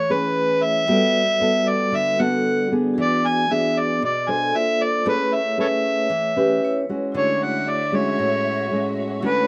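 Sophisticated and sunny, this bossa nova fragment from a longer piece moves at 115 BPM in a straight 4/4, set in A major. An overdriven harmonica carries the melody up front, its gritty, amplified tone played in a jazz style with tongue slaps and scooped notes. Beside it, a thumb-plucked nylon-string guitar gives warm, classical-flavoured accompaniment, while a bright, ringing vibraphone with medium hard mallets and a medium motor vibrato sits in the background. At 7.1 seconds a muted symphonic violin section enters with dark, veiled sustained chords, bowed con sordino with vibrato and a soft attack for a lush ensemble colour. The harmony drifts through rich chords such as Amaj9, Gmaj9, E7 and Bbmaj9 before settling on Dmaj9#11, all within a light reverb.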